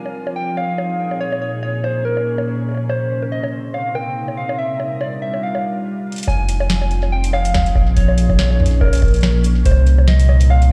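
IDM in F minor at 142 BPM with a 16th-note swing, eerie and melancholic, where a gentle, keys-like FM lead with chorus, tremolo and digital delay carries the melody over a glassy, ethereal pad with ensemble chorus, while a booming analog drum machine with a tonal snare, metallic hats, bongos, cabasa and toms plays from 0.1 seconds. After a brief stop and a drum fill near 6.1 seconds, a round sine sub bass sits up front and a dry, deep electronic kick joins at 6.3 seconds, the kick dropping out at 9.8 seconds. The whole mix sounds as if played on a big sound system in a bare stone room, its chords cycling through Fm7, Bbm7, Cm7 and Gm7.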